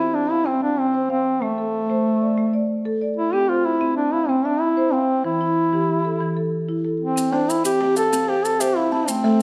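A mellow, folk-style duduk carries the melody up front, its vibrato and scooped notes set against a slapback echo, while a round, woody marimba played with soft mallets circles alongside in arpeggios over a C, Am, Em cycle. The piece is a hypnotic fragment of a southern African traditional mbira-style interlocking cycle in a straight 12/8. At 7.2 s, close, dry, grainy maracas enter, followed at 7.3 s by a buzzing, thumb-plucked kalimba in the background, all set in a moderate recital-hall reverb.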